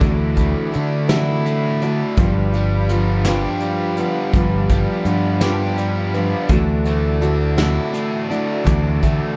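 A dark, warm production with light small-room reverb frames this short folk rock and heartland rock excerpt in G major, moving at a slow 55 BPM in a straight 6/8 with an open-road, nostalgic mood. A full-bodied jumbo steel-string acoustic guitar, its finger squeaks audible, carries the picked accompaniment alongside a bright, double-tracked overdriven electric guitar riff, while a round, punchy picked electric bass sits up front and a distant, roomy brush kit with a punchy kick and rolled-off top holds the time. Behind them, a flute-like tonewheel organ with key click and slow rotary speaker sustains chords through the Dadd9 to G7 and back to Dadd9 progression.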